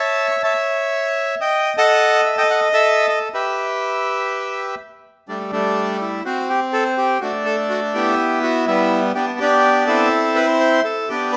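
A reedy, up-front solo bandoneon opens this passionate, tense tango, playing with a rubato feel around 124 BPM in 4/4 and ranging from G3 up to C#6. The harmony starts in E harmonic minor, moving through A, D#dim over A and Em, then turns toward G major at 5.3 s, where a Gsus2 chord gives way to a brief chordless passage before D5, Em, G and C6 chords follow. A moderate reverb gives the instrument the air of a large studio, and the 11.4-second piece sounds cut from a longer performance.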